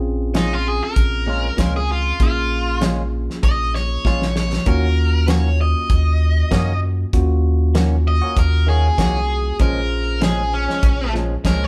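A bell-like tine electric piano and a deep, round sub bass open this brooding, soulful excerpt of straight-eighth soul blues in Bb minor, moving at 97 BPM in 4/4 with a light 16th-note swing. At 0.3 seconds an acoustic soul drum kit joins with a fat snare, tight kick and hi-hat under a rolled-off top, alongside a twangy, compressed clean electric guitar recorded direct that adds picked stabs. An overdriven electric guitar carries a bright, picked solo melody across the whole passage, sitting a little forward of the piano and clean guitar while the sustained sub bass stays up front. A drum fill at 4.1 seconds leads into the move from Bbm7 to Ebm7, and the harmony returns to Bbm7 near the end. The band sounds as if it is playing live together in one large studio, with a moderate reverb giving the mix a sense of space.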